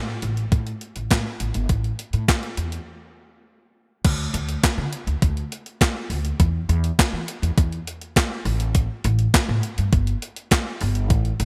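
A clean 12-bit digital drum machine sits up front with a thumpy kick, a medium-tuned snare, handclaps, hi-hat and crash cymbal, its sampler-style sound roughened by overdrive and shaped by gated reverb, as if re-recorded in a small room. This funky, slick slice of early-eighties boogie funk, cut from a longer piece, moves at 102 BPM in a straight 4/4, tuned to A4 = 437 Hz. An upright bass opens the track at 0.0 s, plucked pizzicato with a woody, growly, steel-strung tone that stays bright and close, ranging from G1 to E3. The drums join at 0.2 s, and a break from 2.9 to 4.0 s leads into a new section that carries through to the end at 11.4 s. The overall production is dry and bright in a 1980s digital style.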